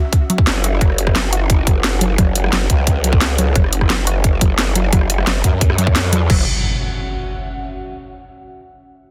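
A straight 4/4 drum and bass groove at 175 BPM drives this dark, futuristic slice of technical drum and bass, with a tight, up-front electronic kick and an overdriven kit of cracking snare, rim click, bright hats and crash. A growling, saturated growl bass wobbles through a formant filter in the low register, while a detuned unison pluck plays arpeggios with 12-bit sampler grit and tape echo, and a soft, breathy pad drifts behind with chorus, both carrying sidechain pumping. The dry, heavily limited mix feels dense and close, and at 6.3 seconds the drums drop away as an electronic impact hits and the pad rings on beside it until 7.6 seconds.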